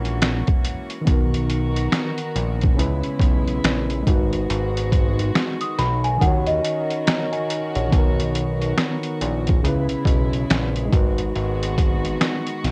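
Lo-fi hip hop at 70 BPM in B major, dreamy and nostalgic, where a gritty, pitched-down sampler-style drum kit with thumpy kick, snaps and hi-hat sits up front beside a fat, detuned analog bass, while a worn, slightly out-of-tune electric piano with cassette grit and a reedy, lightly vibrato string section hold soft chords through Bmaj7, C#m7 and G#m7, and a bell-like celesta with tape echo appears briefly from 5.6 to 7.7 seconds, all in a light-reverb home-cassette sound cut from a longer piece.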